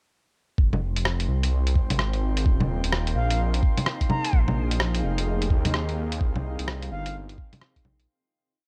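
A menacing, saturated detuned saw bass underpins this melancholic, rainy future garage piece at 128 BPM in F minor, its long gliding notes and filter swell arriving at 0.6 seconds alongside a muffled, thumpy two-step kick and a compressed lo-fi kit of skittering, shuffled hi-hat, bongo and rim click. A blurred granular cloud pad pumps through slowly shifting chords from Fm9 to Cm7, while a glassy texture with chorus drifts in the background on a held high note. A reedy, airy concert flute enters at 3.2 seconds with short tongued answering phrases through tape echo, and the piece fades out from 5.6 seconds.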